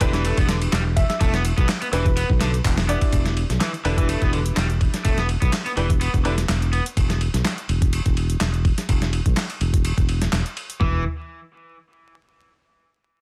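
Dense and heavily limited, this dry, crackling breakbeat cut struts along at 125 BPM in E minor with a swaggering, funky feel and a light swing on the sixteenths. A gritty, thumpy sampler-style drum kit sits up front with its kick, medium-tuned snare, hi-hat, ride and toms, layered with a quieter electronic house kit adding handclaps and hi-hat, its snare softly clipped. A growly, bright fingered electric bass holds down the low end throughout, while an overdriven semi-hollow guitar plays a riff through tape echo until 6.8 seconds, returning briefly at 10.8 seconds. Brilliant grand piano stabs, roughened by 12-bit sampler grit and tape echo, punch in over an Em7 chord until 6.3 seconds. Between 1.0 and 2.6 seconds a round, gentle FM synth lead with chorus and a lo-fi AM radio tone adds a short melody, and the band hits an accent at 2.6 seconds before the chord falls away at 10.8 seconds.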